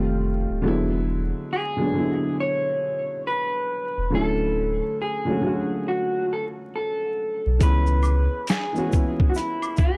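A slow 69 BPM lo-fi hip hop groove in 4/4 with a 62% swing on the 16ths carries this nostalgic, melancholic excerpt, where a dark, woody upright piano, slightly detuned and boxy with audible action noise through cassette tape, plays F9, E7, Dmaj7 and C#m7 over a thick, triangle-toned saturated sub bass. At 1.5 s an electric guitar at the edge of break-up enters with a fingered, slightly broken-up melody softened by a low-pass filter and tape echo. At 7.6 s a thumpy, pitched-down boom bap sampler-style drum kit arrives up front alongside a faint egg shaker and woodblock in the background, all within a dry, gritty hardware sound dusted with vinyl crackle and tuned to A4 = 437 Hz.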